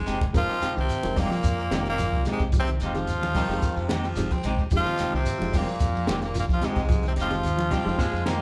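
A raspy, gritty tenor saxophone carries the melody in this defiant, driving afrobeat excerpt at 110 BPM in F minor, over a single Fm9 chord, with a brilliant trombone and an edgy, forceful baritone saxophone playing second lines beneath it. A round, dark dub bass played with fingers plays alongside a compact cocktail drum kit with a punchy kick and high-tuned snare, which opens and closes with a fill, while grainy shekere and low-tuned congas sit in the background. Picked arpeggios on a clean electric guitar, hollow-body stabs with tremolo on a semi-hollow guitar, and a reedy electric piano with fast tremolo fill out the band, heard playing live in one room with a moderate large studio reverb.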